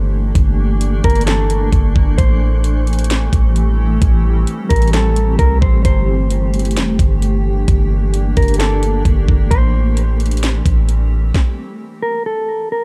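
A dark, dry mix frames this hazy, spacious stretch of atmospheric cloud-rap in a half-time feel, where a blurred, granular cloud pad drifts between Gm69 and Am7 under a mellow, clean electric guitar melody with warbly pitch drift and tape echo, while a deep, boomy 808-style bass and an up-front trap kit of knocking kick, sharp snare and metallic hats carry the beat until the pad and bass stop at 11.3 s and the drums at 11.5 s, leaving the guitar alone until 12.8 s.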